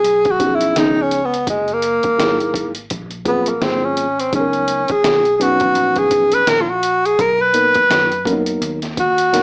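Jazz-hop in a relaxed, smooth hip hop vein, this short excerpt rolls along at 84 BPM in 4/4 with a lazy 16th-note swing, set in B major. A breathy tenor saxophone carries the melody up front throughout, its subtone playing marked by vibrato, scooped notes and a smooth top, with a slapback echo trailing each phrase. Beneath it, a trip hop sampler-style drum kit supplies hi-hat, a thumpy kick and a medium-tuned snare, sounding compressed, pitched down, muffled and overdriven, while a dark, round, foam-muted electric bass adds punchy low notes. A mellow tine electric piano joins at 0.4 s with slightly out-of-tune chords heard through built-in speakers, moving through rich extended harmonies from G#m11 and C#9 to a closing Bmaj7. The whole mix sits in a small room and carries a worn cassette character, with warbly pitch drift and a small-speaker tone.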